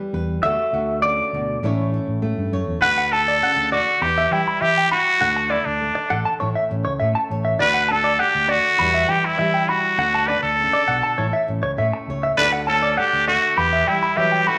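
Highlife at 100 BPM in D major with a joyful mood, this excerpt opens with twangy, compressed clean electric guitar arpeggios leading over fingerpicked flamenco guitar and a growly fingered electric bass, before a nasal, breathy trumpet with straight mute takes the up-front jazz-style melody with scooped notes at 2.8 seconds, and a gritty, punchy tenor saxophone adds a background second line from 12.4 seconds, all set in a lush large-studio reverb.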